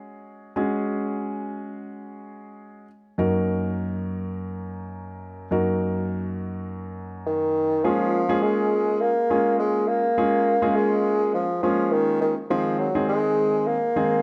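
Confident yet bittersweet, this pop excerpt in Bb minor at 103 BPM opens with a dark, smooth, vintage-toned grand piano playing chords up front, before a mellow, roomy bassoon with light vibrato and delay enters at 7.3 seconds to carry a classical-style solo melody into a drop at 7.8 seconds, all set in a lush hall reverb.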